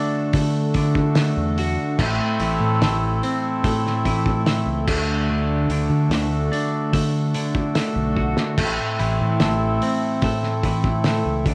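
A bright, twangy twelve-string electric guitar riff opens this mysterious, hypnotic psychedelic rock excerpt, its clean picked tone shimmering through a phaser and sitting up front beside the reedy, breathing tone of a hand-pumped harmonium holding sustained chords. At 0.3 seconds an overdriven fingered electric bass, round and punchy, joins with a cloth-damped drum kit whose muffled, thuddy sound pairs a fat snare and tight kick with dark cymbals and a gritty, saturated, lo-fi character. The tempo is a slow, straight 73 BPM in 4/4, centered in A dorian, with the harmony moving between D and Am. A brief drum fill at 8.2 seconds leads back to the Am chord. Light reverb and small room ambience give the whole a close, intimate feel, with the harmonium's nasal hum adding an eerie, trance-like color beneath the guitar.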